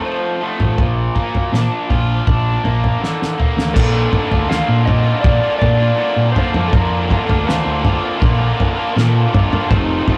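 Psychedelic rock with a hazy, kaleidoscopic mood, this short clip from a longer piece moves at an unhurried pace in a straight four, built around F and Bb chords. A bright, overdriven garage guitar, double-tracked and up front, picks out the riff from the very start, while a clean lap steel guitar sits in the background with slide, volume swells and a compressed, warm tone carrying the melody. A dark, round hollow-body bass and a cloth-damped, thuddy drum kit join at 0.6 seconds, the kit dry and smooth with dark cymbals, a fat snare and a tight kick. A drum fill from 3.0 to 3.8 seconds leads into a new section that carries on to the end. The rough rehearsal-room sound has a light reverb and a saturated glow.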